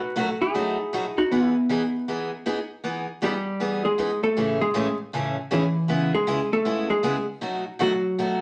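A dark, clean hollow-body jazz guitar opens this cut from a longer country piece, carrying the melody at a swung 157 BPM in E major. A boxy parlour steel-string acoustic guitar joins at 0.2 seconds with picked accompaniment. From 2.8 seconds the electric guitar takes a compressed, up-front solo over Emaj7, Amaj7, C#m7 and B7, giving the tune a playful, down-home lilt, while tape saturation, vinyl crackle and a wet studio reverb lend the recording a vintage patina.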